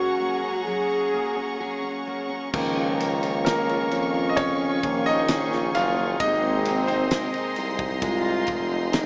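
Set in a straight, unhurried 4/4, this heartfelt and tender pop ballad fragment opens with a brief break in which the piano, horns, strings and guitar share the stage over a Gbadd9 chord. The intimate concert grand sits up front with deep bass and audible action noise, while a distant, roomy French horn section carries a dark second line with light vibrato. Above them a rich studio string section holds smooth bowed chords, and a full-bodied fingerpicked steel-string acoustic guitar spins arpeggios in the background through tape echo. At 2.5 seconds the piano takes its solo as a clear tuba with vibrato enters on the bass and a loose indie drum kit joins with a fat snare, punchy kick, crash and ride in a pumping room, the harmony moving through Db6 to Abadd9. Light reverb and studio ambience wrap the whole in a small-speaker sound.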